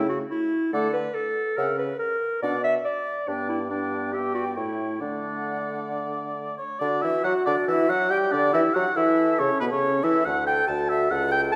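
At a quick 140 BPM in 4/4, with a flexible rubato feel, this lively, spirited fragment of a classical-period movement for wind quintet sits in D major, tuned to A4 = 436 Hz. The silver concert flute carries the melody with a pure, metallic tone, crisp attack and expressive vibrato. The oboe, placed up front with light vibrato, sings a second line in the same register. The clarinet's smooth-topped accompaniment and the mellow French horn, heard distant and roomy, fill the middle, while the bassoon anchors the bass with a warm, lightly vibrant tone. The harmony moves from a rootless A/C# through D, Bm, G and A7 before a new section arrives at 6.8 s, leaning on G5 and A7/E and settling back on D at 10.2 s, all bathed in the wet reverb of a recital hall.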